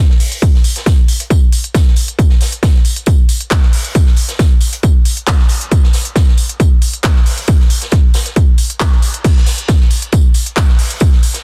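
A heavy electronic kick drum sits up front and drives this relentless techno excerpt at 136 BPM in a straight 4/4, entering at 0.4 s and holding through to 11.1 s. Around it, a layered techno kit adds handclaps along with smooth hi-hats and crash cymbal that pump against the kick under sidechain compression, with a tape-warm character from being re-recorded in a small room. Further back, a natural-sounding vintage acoustic kit adds hi-hat, tambourine and a medium-tuned snare, all thinned by high-pass filtering, in a dry, dense and heavily limited modern mix.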